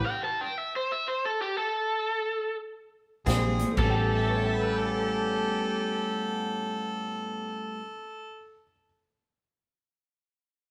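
This excerpt of a rollicking, swaggering electric blues shuffle sounds like a band playing live together in a wet stone room. It opens in a stop-time passage, where a raw, overdriven garage guitar carries the lo-fi, up-front melody after a single horn stab on an A9 chord. At 3.3 seconds the full band crashes in on a Bb9 that moves back to A9. A big-band drum kit hits briefly with a punchy kick and crash, a dark, foam-muted fingered bass holds the low end, a slightly broken-up guitar through a small old amp plays a picked riff, and the jazz-style horn section returns with warm, present stabs. A detuned, jangly honky-tonk upright piano sits very quietly underneath, while a bright, close-miked harmonica with overdrive enters at 4.1 seconds as a second line with scooped notes. The harmonica and piano carry on past the rest of the band, with the harmonica stopping at 8.6 seconds and the piano ringing on until 8.8 seconds.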